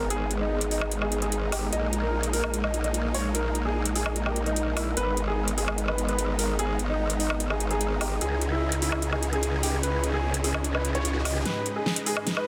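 Heavy wobble dubstep in G# minor at 148 BPM with a half-time feel, cut from a longer piece, carrying a heavy, menacing mood. Up front, a growling, saturated bass wobbles through a formant filter with overdrive and chorus, while an electronic drum kit hits with a huge snare, metallic hi-hats and a woodblock. Huge, lush supersaw chords sustain alongside a concert grand piano melody whose tone, rich with deep bass, trails through digital delay, and an ethereal, airy pad drifts in the background with ensemble chorus, reverb and phaser. The harmony moves through G#m, D#sus4/A#, G#m and C#madd9, and a sub drop lands at 0.1 s as a riser climbs from 9.4 s. The bass stops at 11.4 s, and a brief build-up with a drum fill arrives over a return to G#m in a dense, heavily limited mix.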